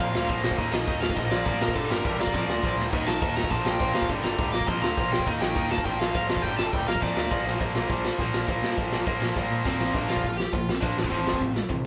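A raw, urgent punk rock clip at 205 BPM opens with the whole band at once in a small room: a tight, bright double-tracked distorted guitar riff sits up front over a saturated, punchy garage drum kit, while a growling overdriven bass sits in the background and a smooth overdriven lead guitar carries the melody. The chords circle around Bb, Eb and G, with drum fills punctuating the straight 4/4 drive. The lead guitar drops out at 7.4 seconds as the kit fills into the next section, returns at 9.7 seconds, and an F/A chord arrives at 11.0 seconds just before the clip cuts off.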